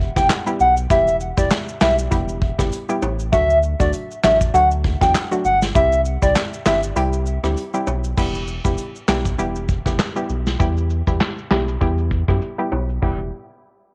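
Dancehall at 99 BPM in E minor, hypnotic and sultry, this excerpt from a longer piece moves over Em, D and C chords with a lightly swung 16th-note feel. A woody, vibrato-tinged clarinet-like synth lead with chorus, tape echo and cassette grit carries the melody up front until 6.8 s. Beneath it sit a round, deep analog bass; a nasal, bouncy square pluck with chorus and sidechain pumping; a dark brush kit on cassette with tight kick, rim clicks, handclaps and hi-hat; and ringing maracas and timbales set low. After a break at 7.0 s, a filter sweep takes over from 8.2 s, and the whole mix carries a small-room ambience and a muffled home-cassette sound.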